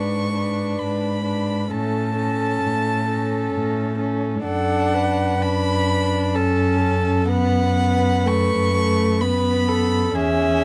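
A string quartet opens together in a slow, tender romantic movement in 3/4 at 65 BPM, its rubato pulse carried by a rich, intimate first violin singing the melody high above with light vibrato and an airy bow, while a dark, pure second violin floats a line beneath it. A shadowy viola fills in the accompaniment and a warm cello sits up front on the bass, all four players bowing sul tasto with soft attacks. Light reverb and a dark, warm production frame this brief fragment of a longer piece as the harmony moves from a rootless E7/G# through A and D/F# to B5/F#.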